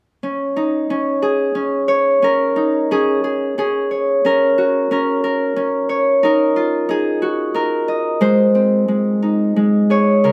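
Set in a gently swaying three-beat metre, this short children's piece moves with a loose, rubato feel that lets the pulse breathe and stretch. A lone Celtic harp carries the melody from 0.2 seconds to 10.3 seconds, its acoustic, fingerpicked notes reaching from the low middle register up into a clear upper range. The tone is brilliant and ringing, sitting up front in the sound, while a moderate recital hall reverb adds a soft halo around each plucked string. The mood is innocent and sleepy, like a lullaby drifting toward bedtime, with a short opening phrase giving way at 2.2 seconds to a longer passage that unfolds over Dbsus2, Gb/Db, Ebmadd9 and Ab harmonies. Cut from a longer piece, the clip ends still resting on that final chord, as if the tune were about to continue.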